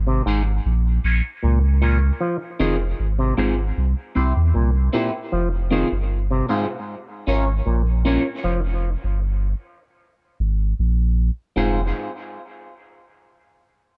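A deep, round sub bass opens this short reggae fragment at 77 BPM, setting a heavy, meditative mood in F harmonic minor with a straight 4/4 feel. Almost at once a mellow clav joins with arpeggios through a combo amp, its percussive, stringy tone coloured by auto-wah and dub echo. A clean, twangy electric guitar enters at 0.3 seconds with picked accompaniment, thinned by a high-pass filter and shaded with phaser and dub echo, sitting up front alongside the sustained sine-like bass. The harmony moves from Fm through Bbm and C, then shifts at 5.3 seconds into a passage that drifts through Fsus2 and Absus2 before settling back on Fm. Light reverb and a digital ambience frame the sound, and the parts stop around 11.9 seconds as the piece is cut from something longer.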